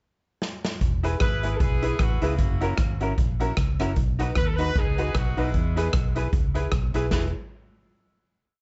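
A dry, dull-topped recording with little reverb carries a joyful, cheerful ska piece in E major at 152 BPM with a swung feel: a street-band drum kit opens with a fill at 0.4 s and settles into a ska beat with a side-stick backbeat, boomy kick and dark cymbals, a round, foam-muted electric bass walks beneath, a hollow-body jazz guitar and a bright, slightly detuned upright piano with audible action noise chop the off-beats, and a distant horn section with light vibrato and tape echo plays hook phrases until 6.1 s, ahead of the final chord at 7.1 s.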